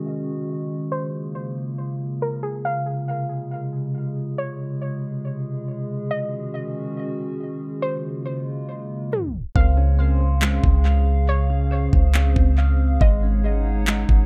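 A deep, round 808-style bass, a knocking electronic drum kit of kick and handclaps, and clean, fingered electric guitar arpeggios coloured by phaser arrive at 9.6 seconds in this floating, dreamy half-time cloud-rap fragment, the bass and drums up front. They join a warbling, nostalgic lo-fi pad with chorus and sidechain pumping and a gentle vintage pluck melody trailed by tape echo, the entrance following an opening filter sweep that ends in a tape stop.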